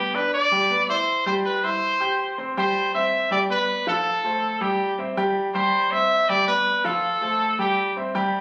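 Latin in C major at a brisk 161 BPM, this joyful, festive passage cut from a longer piece features an up-front trumpet taking the melody with a punchy, vintage pop-style tone and light vibrato until 7.9 s, over clear, polished baby grand piano accompaniment moving through G, C, G7 and F, all captured on a phone in the room with club reverb and compression.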